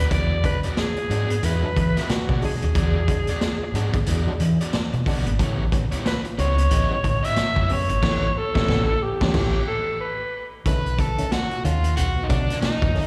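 A swung sixteenth-note funk groove at 91 BPM in 4/4 comes from a raw garage drum kit with a boomy kick and saturated, rolled-off top, anchoring a strutting excerpt where a punchy, overdriven fingered electric bass and a crunchy guitar with slapback echo ride E9 and A9 chords, a mellow muted clav adds background stabs through auto-wah and slapback echo, and a raspy, breathy alto saxophone with vibrato growls the melody up front through a band accent at 8.0 seconds that leads to an overdriven electric guitar solo over B9 at 10.7 seconds, all heard as a live gig through the venue's PA in recital-hall reverb.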